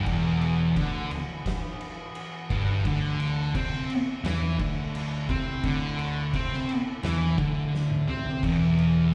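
A brooding, sludgy stretch of stoner and doom metal opens at once with two thick fuzz guitars grinding out a dark, distorted riff, one up front and its twin in the background, each trailed by a slapback echo. Beneath them a picked electric bass gives a round, foam-muted, overdriven low end, while an overtone-sweeping drone of detuned sawtooth and sine tones holds sustained chords far back, its resonant, moving overtones softened by chorus and its own reverb. An oversized low-tuned drum kit joins at 0.1 seconds with a fat snare, punchy kick, toms and crash, sounding saturated and gritty with a rolled-off top in a bright stone room. The harmony moves from E minor to D5 and then to E5 at 8.4 seconds, just after a drum fill from 7.7 seconds. The whole piece is heard as a live gig through the venue's PA, wrapped in small room ambience and recital hall reverb, and this cut from a longer piece ends at 9.1 seconds.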